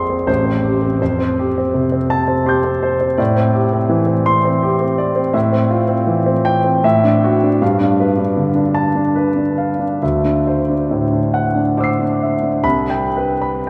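An intimate, up-front grand piano with audible action noise plays a hazy, luminous impressionist passage in a rubato three, its lush seventh and ninth chords drifting through the long tail of a vast, echoing cathedral reverb before settling on an open major-seventh color at 12.6 seconds.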